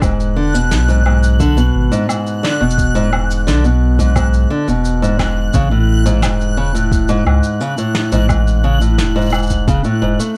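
A soft, overdriven electronic kick sits in the background beneath distant, roomy brushed snare, woodblock and shaker in a straight 4/4 pulse, while an up-front, fingerpicked nylon-string guitar plays arpeggios over a round, sine-like sub bass and a reversed, detuned granular texture swells dreamily high above, shaping an intimate, autumnal folktronica excerpt that moves from E7 to Amaj7 at 5.5 seconds.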